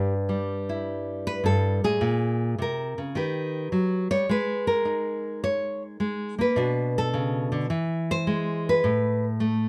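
Solo jazz with a swinging, playful mood, played on a single nylon-string guitar for just under ten seconds, cut from a longer piece. The fingerpicked guitar sits up front with a bright, fresh-stringed classical tone, and finger squeaks come through as it moves over sus2, minor ninth and augmented harmonies. A light reverb gives the swung eighth-note feel a little air.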